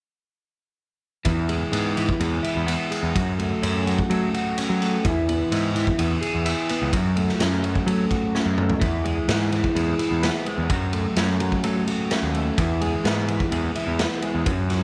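Dark and trippy, this excerpt of psychedelic rock moves at 127 BPM in a straight 4/4, built on a riff from a clean, compressed twelve-string electric guitar run through a rotary speaker, alternating between E and F#m. A raw garage drum kit, gritty and saturated with a punchy kick and a pumping stone-room sound, enters with the guitar at 1.2 seconds and drops a fill at 8.3 seconds, while a growling picked electric bass with overdrive joins at 1.3 seconds. The guitar and drums sit up front in a small room with light reverb.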